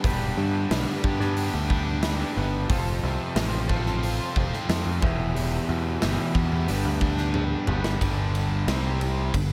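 A straight 4/4 groove from a big, natural-sounding acoustic rock kit drives this classic rock piece, with a punchy kick and medium-tuned snare up front alongside hi-hat, ride cymbal and toms. The mood is driving and confident, and a warm, direct picked electric bass holds down the low end just as prominently. Two picked guitars play riffs throughout: a bright, distorted electric guitar and a crunchy overdriven guitar set further back. Very quiet beneath them, a full, shouting tonewheel organ with light overdrive, chorus vibrato and a slow rotary speaker sustains chords. The harmony moves from G to F, Em and back to G, and a drum fill from 7.3 to 8.0 seconds leads into a new section where the harmony shifts to C5, heard in a small room ambience.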